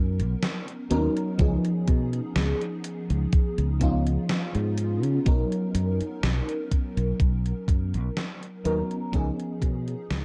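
Nostalgic and faded, this short vaporwave excerpt drifts in a slow, straight 4/4 with a dark production and a digital ambience around it. An FM electric piano layered with a soft pad carries the accompaniment, its lush, dreamy tone detuned and mellow, colored by phaser, ensemble chorus, cassette tape and tape echo as the harmony sways between Bmaj9 and C#9. A fingered electric bass sits up front from the first moment, round and direct with a touch of tube saturation. A gated 80s digital drum machine enters at 0.2 seconds with hi-hat and a snare bathed in gated reverb, sounding tape-softened and re-recorded in a small room, while a thumpy electronic kick joins at 1.4 seconds, prominent in the mix. The whole passage begins fading out at 6.6 seconds, as if slipping away from a longer piece.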